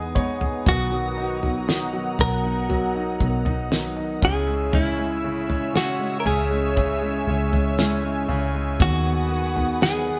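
A bright grand piano opens this heartfelt, hopeful pop ballad excerpt with a short fill, alongside a lush, airy unison pad with chorus and phaser, a dark fingerpicked steel-string acoustic guitar in the background, and a round, foam-muted vintage electric bass, all moving through Emaj7, Bmaj7, C#m and G#m7/D# at a slow 59 BPM in 4/4. A dry, damped 70s drum kit with a fat snare and tight kick sits up front on kick, snare and toms. From 0.7 seconds a clean, compressed, scooped electric guitar, recorded direct, carries the melody up front, the whole band sharing a moderate stone room reverb as if playing live together.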